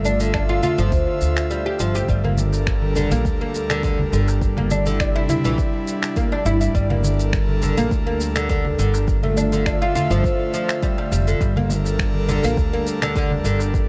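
A bright, fretless oud plays arpeggios up front over an airy, breathy pad with chorus and sidechain pumping, a woody pizzicato upright bass, and gritty, sampler-style shaker, finger snaps and congas, with a deep electronic kick arriving at 0.3 seconds. This meditative organic downtempo piece in G dorian moves at 103 BPM in a straight 4/4, with a brief break from 1.5 to 2.1 seconds and a tape echo and low-pass filter shading the oud. A crisp, metal-shelled darbuka joins at 2.4 seconds in the background as the chords circle between Gm, Dm/G and C7/G, all in a dry mix.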